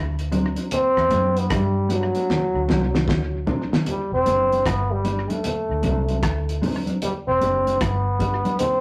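A trombone carries the melody in this meditative, serious roots reggae excerpt, its tone carrying vibrato and sitting up front yet with a distant, roomy quality as it enters at 0.7 seconds. At 76 BPM in E minor, the groove swings its sixteenths, with the harmony moving between D7 and a rootless Em7. A dark, round, foam-muted fingered electric bass anchors the low end, while a clean, compressed electric guitar plays fingered accompaniment in the background. The cloth-damped drum kit sounds thuddy and muffled, with a fat snare, a tight kick, rim clicks, hi-hat and toms, gritty saturation, a rolled-off top and tape echo, and it plays a fill from 2.3 to 3.9 seconds. Bright, thin-skinned congas struck with hard hands add band-limited percussion further back, all captured as a rough rehearsal-room recording in a wet small room.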